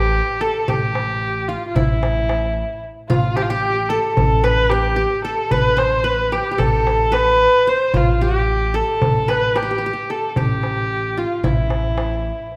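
Turkish makam ensemble music in a 9/8 metre with a straight feel, soulful and melancholic in mood, taken from a longer piece. A single bowed kamancheh carries the melody up front, its smooth, even tone rounded at the top and shaped with vibrato and portamento. Beneath it, a fingerpicked qanun plays a second line in the same register, quieter in the mix, its triple strings giving a bright-edged shimmer. The pizzicato upright bass, woody and also up front, sits on a low A, while a darbuka with a clay shell and natural skin joins at 0.4 s, played with soft hands and carrying a vintage, band-limited colour. A recital hall reverb of about 1.4 s wraps the ensemble in a generous, resonant space.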